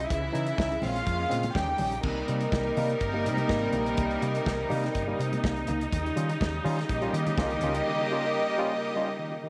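Celebratory and glamorous, this short disco passage, cut from a longer piece, moves at 124 BPM in a straight 4/4 feel. A reedy, gut-toned violin section with light vibrato sits up front carrying a second line, while a lush, focused string section holds sustained chords underneath, moving from Dbmadd9 through Bbm7 and Eb7 to Cm7 before returning to Eb7. A round, punchy hollow-body electric bass with a dark, amped tone anchors the low end, and a bright, barky tine electric piano played through a combo amp fills in the accompaniment. A soul drum kit with dark cymbals, a medium-tuned snare and a tight kick keeps the groove with a rolled-off top, joined by very quiet, damped congas played with soft hands. The drums and bass drop out at 7.8 seconds, leaving the strings and electric piano to ring on in a small room softened by moderate plate reverb.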